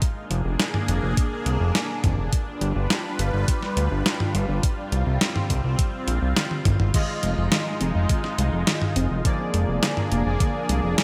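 Nocturnal and nostalgic, this synthwave excerpt moves at 104 BPM in a straight 4/4, carried by a lush, detuned unison pad that holds sustained chords through chorus, phaser, sidechain pumping and shimmer reverb. Beneath it, a fat, thick analog bass with a sawtooth edge and filter sweep pumps in from 0.3 seconds, while a thumpy, tape-toned electronic kick and a clean 12-bit drum machine with gated-reverb snare, hi-hat, toms and crash sit up front. The harmony drifts from Bb7/F through G7 and Csus4 to Fm7 before returning to Bb7/F. A drum fill at 6.4 seconds ushers in two new voices at 6.9 seconds: bold, brassy analog synth stabs with vibrato and a mellow, evolving tone, and a soft, round pluck playing dark arpeggios in the background, both bathed in chorus, delay and shimmer reverb. The bright 1980s-style digital production bathes the whole mix in a moderate, lush hall reverb.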